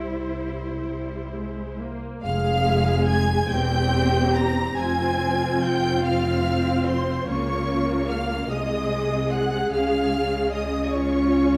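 In a slow 6/8 at 48 beats per minute, counted in dotted quarters, the pulse stretches with rubato and its beats fall unevenly. This elegiac, melancholic passage comes from a slow romantic movement for string orchestra in F minor, cut from a longer piece. A violin section carries the melody with a smooth, even, vibrato-laden tone, while a second violin section, lush and set at a distance, shapes an expressive line beneath it. The viola section sits close with a warm, bowed accompaniment, and cellos with a mellow upper register and the rich double basses, close and steady, together anchor the bass. After a brief opening on a C chord, the harmony settles on F minor at 2.2 s and later moves toward D-flat, with the ensemble bathed in the resonant glow of a scoring-stage reverb.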